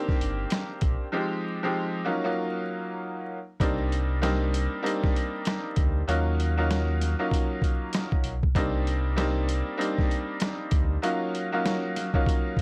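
A pitched-down, compressed sampler-style drum kit with a thumpy kick, medium-tuned snare, rim clicks and hi-hat sits up front in this dark, reflective boom-bap hip-hop excerpt at 97 BPM with a swung 16th feel, alongside a woody, slightly detuned upright piano with a worn cassette tone voicing minor ninth and minor seventh chords over C, F and E-flat, and a deep sine-like sub bass with an octave that drops out at 11.0 seconds, all captured with a dry, gritty hardware sound and vinyl crackle.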